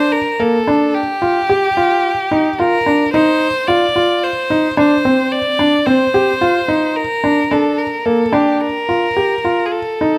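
Close, detailed microphones and a light reverb frame this hypnotic, restless excerpt of contemporary chamber music in 7/4, where a felt-muted upright piano, intimate and mellow with audible action noise, plays arpeggios up front while a single bright violin carries an intense second line with vibrato and an airy bow over Gm7 and F5 harmonies.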